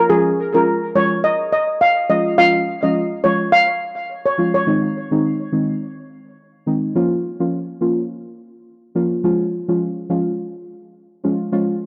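A dry, gritty hardware recording with light reverb and a small room ambience gives this dancehall fragment, cut from a longer piece, a sunny, bouncy character at 105 BPM in 4/4, with a 16th-note swing in Db major. A shimmering, metallic double-seconds steel pan, struck with soft rubber sticks and sitting up front in a boxy small-room tone, carries the melody between Ab4 and F5, its notes trailed by tape echo. The pan drops out at 4.6 seconds, leaving a deep, mellow chord stab to carry on alone until 11.7 seconds. That stab blends triangle, sawtooth and sine tones with a fast attack, a decaying tail and a filter sweep, and chorus lends it a dark, warbling, vintage color. The harmony moves from Db through Ab and Bbm before settling back on Db.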